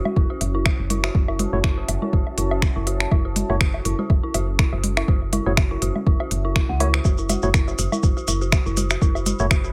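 Clinical and hypnotic, this minimal techno excerpt rides a single F#m7 chord with a soft, tape-warm kick and clicky snaps and hi-hats up front, a round, woody FM bass, analog congas and woodblock, an eerie, inharmonic detuned bell riff through dub echo, hollow organ-like stabs from 1.5 seconds, a deep, evolving pad in the background, and grainy maracas joining at 7.0 seconds.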